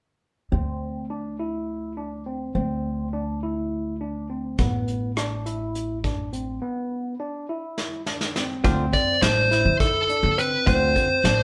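Tense and intricate, this progressive instrumental moves in a straight 7/8 at 207 BPM counted in eighths, centred on D dorian and cut from a longer piece. From the opening, a bright, barky overdriven tine electric piano plays gritty arpeggios through a combo amp with a phaser, over a woody, thumpy pizzicato upright bass sitting up front, as the harmony moves from Cadd9/D to Asus2. A vintage brush kit enters at 4.6 seconds, with a punchy kick, medium-tuned snare, rim clicks and hi-hat under a rolled-off top, and a drum fill leads into a new section on Dm7. There a dark, clean, compressed hollow-body jazz guitar adds fingered accompaniment from 8.6 seconds, and a smooth, dark overdriven lead guitar takes the picked melody at 8.9 seconds, sitting loudest in the mix. The band sounds as if playing live together in one room, with moderate studio reverb.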